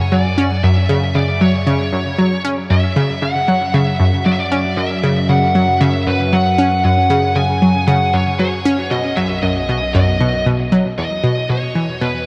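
A huge ambient reverb with a 9.2-second tail surrounds this short cut from a longer piece of ambient, sequencer-driven space music, moving at 116 BPM in a straight 4/4 with an expansive, cosmic mood. An up-front analog pluck riff, round and bright with detuned sawtooth and square layers, ring modulation, a filter sweep and analog delay, carries the pulse over a resonant, evolving analog drone bass built from pulse-width-modulated waves with a slow attack and long release. A dark, high-gain lead guitar, distorted and picked with analog delay, plays the melody throughout as the harmony moves from F#5 to B at 8.9 seconds and to E5 at 11.0 seconds.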